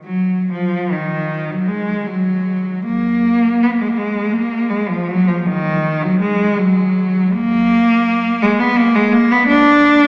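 The rhythm moves freely in 3/4, pulled and stretched in rubato with a tempo that drifts between 53 and 86 BPM. This is a mournful, lonely classical piece for unaccompanied cello, a brief passage of about 10.1 seconds cut from a longer work. A single bowed cello plays throughout, ranging from Eb3 to D4, with a warm, smooth tone, an even line, vibrato and a smooth top end. The player sits up front in the sound, yet a cathedral reverb with a 4.2-second decay surrounds the instrument and adds a sense of solitude. The passage forms one expressive section that begins at 0.5 seconds.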